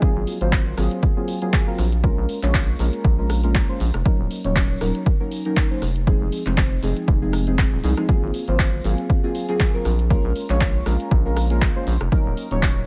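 Wrapped in a digital ambience of vinyl crackle, this hypnotic, late-night deep house excerpt in Bb minor moves at 119 BPM with a swung 16th feel, as an overdriven, punchy analog kick sits up front beside an overdriven drum machine of handclaps, hi-hat and rim click, a rubbery, nasal square bass bounces under sidechain pumping from 0.2 seconds, and dark, soft chord stabs with chorus, phaser, tape echo and a moving notch filter cycle through Ab13, Bbm7, Ebm7 and Fm7.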